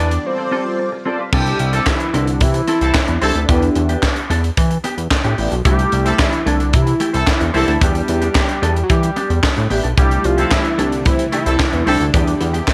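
Danceable and smooth, this cut from a longer early-eighties boogie funk track rides a straight, steady groove in 4/4. A fat, full-bodied analog lead carries the melody from the start, its sawtooth and square-wave tone thickened with a sub octave and colored by phaser and slapback echo. Up front sit a glossy, retro chorused synth bass and a tight acoustic funk kit with a high-tuned snare, tight kick, hi-hat, handclaps and crash cymbal, all bathed in gated reverb. Further back, a dark, clean electric guitar plays a compressed riff through lush chorus, while round, brassy synth brass with vibrato and phaser fills out the accompaniment over a short opening break. A very quiet vintage string machine holds sustained chords, dropping out at 1.3 seconds and returning at 10.0 seconds, and a clear, distant horn section enters at 1.7 seconds with a roomy second line. After an opening G9sus4, chords alternate between C6 and Em7 inside a small room ambience.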